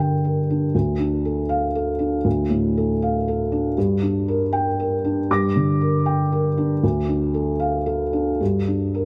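Neoclassical minimalist piano in G minor, wistful and melancholic, where a solo felt-muted upright piano with a soft, thick-felt, intimate tone sits up front in light reverb, moving rubato in 3/4 at 118 BPM across a span from D2 to Bb6 as the harmony alternates between Gm and Dm through this 9.1-second cut from a longer piece.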